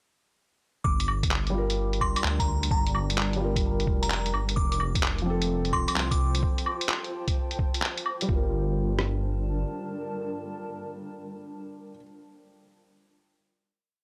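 Wistful and rainy, this short future garage piece moves at 129 BPM in G minor with a shuffled 16th-note swing. A muffled, pitched-down sampler kit supplies a thumpy two-step kick and rim clicks beneath a skittering beat of closed hi-hat, claves and handclaps, while a deep, rumbling detuned saw bass sits up front with long gliding notes and a sidechain pump. A felt-muted upright piano adds sparse, echoing chord stabs with audible action noise, and a granular cloud pad drifts in at 1.8 s with slowly shifting, blurred chords that also pump. Above them, a glassy FM synth bell plays short crystalline phrases coloured by chorus and tape echo. The harmony moves from Gm7 to F and back to Gm7, and from 8.3 s the piece rests on a final chord until the pad stops at 12.2 s. The overall sound is dry and gritty, with little reverb.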